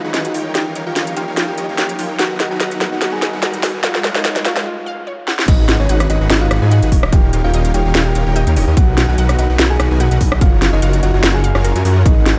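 Future bass at 146 BPM in a half-time feel with a light swing, this bittersweet, dreamy excerpt opens on a build-up where a riser and a trap drum fill run through the first 4.7 seconds before a brief break. A very quiet, breathy pad holds sustained chords beneath a huge, compressed supersaw riff with vibrato, while a detuned saw bass, thick and saturated with chorus, sits up front and pumps with the sidechain. The melody comes from a round, tine-like FM pluck, gentle and dark, trailing tape echo and chorus, with a faint, bright unison pluck spinning arpeggios around it. At 5.5 seconds the drop lands with a hard-clipped electronic kick joining the trap kit's sharp snare, crisp hats, rim clicks and crash. The chords move through D#9, Bmaj7, F#maj7 and G#m7 in a dark, digital ambience with a tape-warm drum sound.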